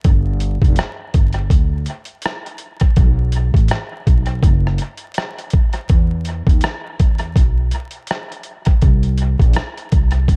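Melancholic and nostalgic, this lo-fi hip hop excerpt moves at 82 BPM in 4/4 with a lazy 16th-note swing, tuned slightly flat to A4 = 438 Hz. An up-front, sampler-style soul drum kit of hi-hat, thumpy kick and rim click carries gritty 12-bit character and tape-warm compression. A dark, woody pizzicato upright bass on gut strings joins at 0.1 seconds, and the dry, echo-heavy mix is dusted with vinyl crackle.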